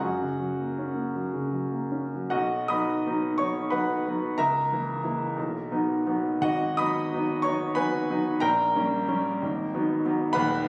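Captured on a phone in the room, the recording places the grand piano up front in a recital hall with a moderate reverb that rounds off each chord. This brief fragment of a romantic character piece for solo piano carries a hopeful, warm mood. It moves in a lilting 6/8 at roughly 46 to 65 dotted-quarter beats per minute, with a rubato feel that lets time breathe. The piano tone is present and polished, and its long sustain lets notes linger, spanning from deep bass up into the bright upper register. Rooted in B major, the music opens on F sharp before a new passage begins at 2.3 seconds, where the harmony settles on B and then drifts through diminished colors and G sharp minor seventh chords before the fragment breaks off at 10.7 seconds.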